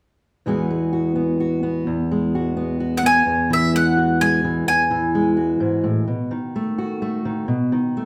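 A bright, double-strung bowl-back mandolin carries a short melody from 3.0 to 5.8 seconds up front over a dark fingerpicked steel-string acoustic guitar with audible finger squeak, in an uplifting folk piece cut from a longer work at 128 BPM in 3/4 and E major, moving from Eadd9 to B7 at 6.1 seconds as the two play live together in a large, reverberant studio room.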